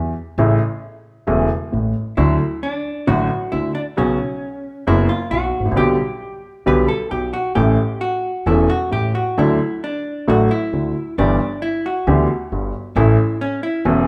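Dramatic and passionate, this tango in D major moves at 134 BPM in 4/4 with a rubato feel, cut from a longer piece. A worn baby grand piano with long sustain sits up front in accompaniment, while a woody pizzicato upright bass on steel strings holds the low end. At 2.2 seconds a dark, clean, picked hollow-body electric jazz guitar enters up front as a second line, all heard as a band playing live in one room with moderate large studio reverb over chords that move from A through D, Bsus2, G/B and G6.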